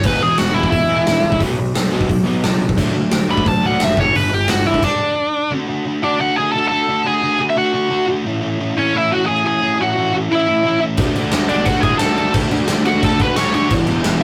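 Punk rock at 176 BPM in a straight 4/4, energetic and rowdy, taken from a longer piece and captured as a rough rehearsal-room recording with saturated tone and a short booth ambience. A high-gain, distorted lead guitar sits up front and opens with a solo over E, B5, D and G5, while a bright, crunchy overdriven guitar churns out a picked riff that runs nearly the whole way through. Underneath, a hollow-bodied overdriven semi-hollow guitar and a growly fuzz bass, direct and amped, fill out the background, joined by a big, natural-sounding acoustic kit with bright cymbals, a medium-tuned snare and a punchy kick. At around 4.8 seconds the bass, drums and semi-hollow guitar stop for a break, leaving the two guitars to carry the music into a section built on D and A. The full band crashes back in at 11.0 seconds, and the lead guitar drops out at 13.7 seconds as the harmony lands on E.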